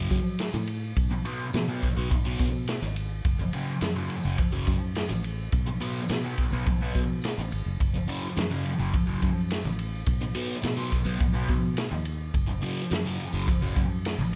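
A straight 4/4 groove at 106 BPM drives this trippy, mysterious psychedelic rock excerpt in F# dorian, where a thick, dark, double-tracked fuzz guitar with phaser sits up front picking a riff over F#m and B chords, a round, foam-muted fingered electric bass anchors the low end, a punchy vintage drum kit with a rolled-off top plays kick, snare and ride, and a jingly tambourine rings in the background of a mix that carries little reverb.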